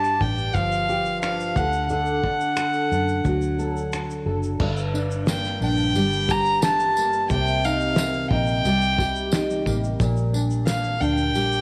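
A floating, soft-attacked violin carries a tender, reflective melody up front from the start, over a double-tracked, full-bodied nylon-string guitar with thumb-plucked tone and audible finger squeak, a round, foam-muted vintage electric bass, and a muffled, gritty cloth-damped drum kit of kick, fat snare, finger snaps, shaker and dark crash cymbal. This straight 4/4 acoustic pop piece in G minor moves at 89 BPM, and its second section turns through G minor, C minor seventh and G minor over B-flat, with a jingly tambourine joining in the background at 4.9 s. A moderate echo-chamber reverb surrounds this short cut from a longer piece.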